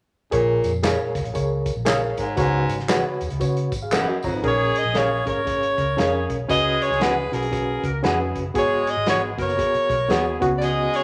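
The rhythm swings on the eighth notes in a steady 4/4, carried by a natural country drum kit with a punchy kick and a medium-tuned snare, and a vintage muted fingered electric bass that sounds dark and round. This uptempo 1960s-style soul excerpt feels uplifting and joyful, with a reedy electric piano shimmering in fast tremolo throughout and playing a short fill from 3.7 to 4.4 seconds. At the opening a clear, punchy baritone saxophone plays a low riff while tambourine, egg shaker and group handclaps add percussion, both dropping out around 4.4 seconds. A semi-hollow electric guitar adds clean stabs bathed in spring reverb, and the harmony moves between Bbm7, Db7sus4 and Abm7. From 4.4 seconds a soft-attacked horn section takes up a second line beneath a clear soprano saxophone melody, which sits up front with light vibrato and scooped notes, all within a moderate large studio reverb.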